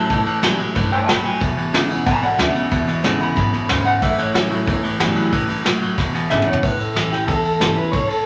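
Rowdy, retro rockabilly at 184 BPM in A mixolydian, cut from a longer piece, where a twangy electric lead through a small old amp carries the tremolo-tinged melody and a clean solo until 6.6 seconds, over a scooped, up-front electric riff that drops out at that point, a full-bodied dreadnought playing a picked accompaniment, a thumpy gut-string upright bass sitting in the background, and a brushed drum kit with dark cymbals that lands a fill just before the shift to a new section, all bathed in a large studio reverb.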